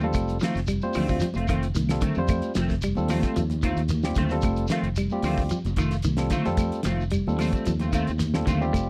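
This joyful, funky afrobeat excerpt at 112 BPM rides an F7 groove, with up-front, dark and scooped clean electric guitar stabs with analog chorus alongside a bright, barky tine electric piano, a twangy, slightly broken-up guitar playing arpeggios through harmonic tremolo, a fingered electric bass, a cloth-damped thuddy drum kit with a fat snare and tight kick, soft-handed high-tuned congas, a grainy shekere and woody claves in the background, all captured in a dry, close 1970s-style studio with light reverb.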